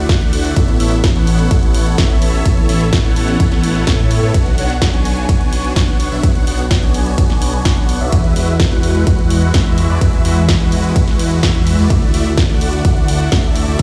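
Festival progressive house with an uplifting, anthemic mood, this short cut from a longer piece moves in a straight feel. Huge, bright supersaw chords carry the riff from the first moment, their detuned sawtooth layers treated with a phaser, digital delay and sidechain pumping. Beneath them a thick, mellow detuned saw bass holds the low end, rounded by chorus and pumping along with the sidechain. From 0.1 seconds a punchy, layered electronic kick sits forward in the mix, joined by a big-room dance kit of snare, hi-hat and ride cymbal set further back in a small room reverb. The harmony cycles through Dadd9, Aadd9, Bmadd9 and Eadd9 before returning to Dadd9, and the whole track sounds as if played on a big sound system in a bare stone room, wrapped in a light reverb.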